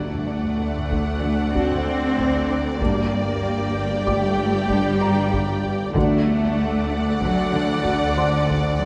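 A lush, focused studio cello section carries the bass in this uneasy, tense suspense film score excerpt at 95 BPM in 5/4, moving from D to G minor and back over a swarming, detuned drone with its own reverb, while a smooth violin section sings the melody above a second violin line, background violas, a very quiet cello riff, a distant, clear double bass section, a soft felt-muted upright piano with audible action noise and hard-stick taiko drums, with very quiet round timpani until 3.7 s, mellow, roomy French horn chords entering at 1.5 s, a high, expressive violin texture joining at 6.0 s, and everything bathed in a wet scoring-stage reverb.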